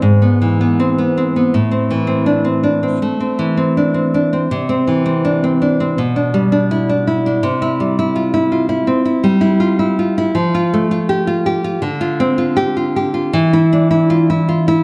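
Intimate and passionate, this romantic piece for solo classical guitar unfolds in A minor at 81 BPM in 4/4, with a freely breathing rubato feel. The nylon-string guitar plays alone throughout the 14.8-second fragment, cut from a longer piece. Its fingerpicked sound is acoustic, up front and warm, ranging from G#2 to G4. The harmony opens on E/G# before settling onto Am at 1.5 seconds, then moves through C, G/B and back to C before reaching F at 10.4 seconds, with Dm7 and a closing Dmadd9/E. A wet recital hall reverb and a dark production surround the instrument, and the tuning sits slightly low at A4 = 435 Hz.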